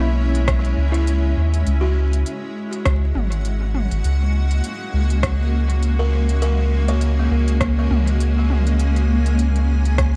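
Opening on a cloudy, detuned granular pad that holds C#m and then F#add9 under its own built-in reverb, a woody, buzzing kalimba playing arpeggios through dub echo, and a round, up-front sub bass over vinyl crackle, this hazy, spacious ambient dub fragment at 101 BPM with a light 16th-note swing brings in an overdriven electronic kit of smooth hats, rim clicks and toms, also echoed, at 0.3 seconds, followed by a very quiet, soft overdriven kick at 0.5 seconds, all in a dry room.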